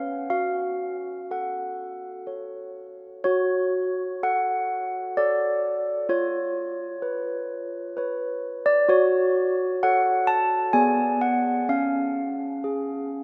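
Classical and wintry in mood, this solemn tune for solo handbells moves at 63 BPM in an unevenly pulsed 3/4 in F# minor, tuned to A4 = 438 Hz, its mellow, clear tones from soft clappers sitting up front and ringing through a wet cathedral reverb as the harmony passes from F#m through C#7/E# and G#dim/B to close on C# at 11.7 seconds, in a brief excerpt cut from a longer piece.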